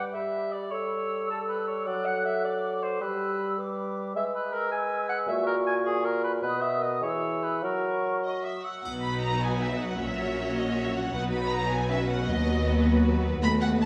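In a 6/8 at 104 BPM with rubato, this cheerful, graceful romantic orchestral excerpt opens in G major with mellow clarinet, up-front cor anglais, a pure, distant flute group and a soft-attacked bassoon, shifting to B major from 4.2 s before the woodwinds give way between 8.2 and 8.8 s to an expressive, vibrato-rich violin melody over lush violins, smooth violas, intense cellos and double basses, and a very quiet triangle touch, all bathed in a wet scoring-stage reverb.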